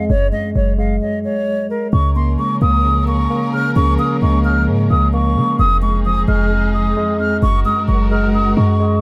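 Wistful and dreamy, this half-time hip hop cut in Db major at 131 BPM opens with an airy, close-miked concert flute melody and a mellow tine electric piano, both treated with tape echo, over a deep, boomy 808-style bass, pausing in a stop from 1.0 to 1.9 seconds before dark, bowed chamber strings enter with sustained chords at 1.9 seconds, moving through Db6, Fm7 and Gbadd9 in an echo-heavy mix with light reverb.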